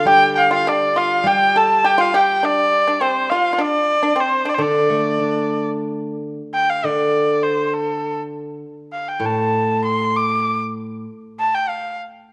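A bowed erhu, pipa and steel-string zither begin together in this wistful, tender Chinese chamber piece, cut from a longer work and set in D yu mode at 101 BPM in 2/4 with a rubato feel. The erhu carries the melody up front, its earthy, rich tone shaded with light vibrato and portamento and a smooth top reaching from A4 to D6. Beneath it the pipa, plucked with fingerpicks, adds a dry, percussive second line in a middle register, falling silent at 5.6 seconds. The steel-string zither, also up front and fingerpicked, supplies a mellow, silvery accompaniment low in the range that keeps ringing until 11.0 seconds, after which the erhu finishes the phrase alone. A moderate recital-hall reverb lends the ensemble a natural sense of space as the music passes from its opening section into a second one at 5.9 seconds.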